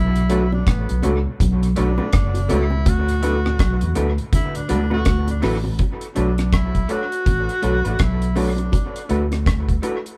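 Smooth and bittersweet, this lovers rock reggae excerpt sits at 82 BPM in B minor with a gentle sixteenth-note swing, moving between Bm7 and D6 chords. A breathy, whispered tenor saxophone carries the melody as an intimate solo through the first 5.8 seconds, its soft attack, scooped notes and vibrato giving it a pop-style tenderness. Underneath, a foam-muted fingered electric bass sounds round and punchy up front, paired with a dry, dark drum kit of tight kick, hi-hat and rim click. A mellow FM electric piano with chorus and dub echo warbles in the background, while an electric guitar through a small old amp adds slightly broken-up, lo-fi stabs, also treated with dub echo. A very quiet tonewheel organ with slow rotary vibrato fills in until 5.7 seconds, and low-tuned bongos played with soft hands add close, gentle texture, all heard as a band playing live in a small room with moderate reverb.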